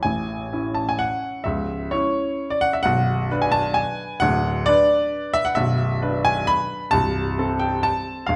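Dotted rhythms give this romantic triple-time dance its lilting step in 3/4, and the rubato lets the tempo drift between 117 and 142 BPM. It is a short passage of about 8.4 seconds, cut from a longer piece, and its mood is wistful and capricious. A single baby grand piano carries everything alone, ranging from B0 up to B5 with a present, up-front tone. The harmony moves from A through C#m, Bm and Bm/D to E5/B, then arrives at Am/C at 6.9 seconds. A wet recital hall reverb with a 1.4-second decay surrounds the instrument, and the overall production leans dark and warm.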